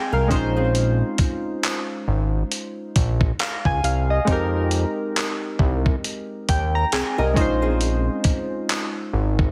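A heavily compressed, radio-like sound with light reverb and digital ambience frames this moody, late-night contemporary R&B fragment at 68 BPM in 4/4, with a 16th-note swing. Round analog keys with chorus and a filter sweep carry the Bbm11 and Fm11 chords up front beside a fat, detuned bass with a moving notch. A gritty sampler-style kit of thumpy kick, hi-hat and handclaps sounds re-recorded in a large room, while a fingerpicked flamenco guitar with audible finger squeak plays delayed arpeggios in the background until 8.9 seconds.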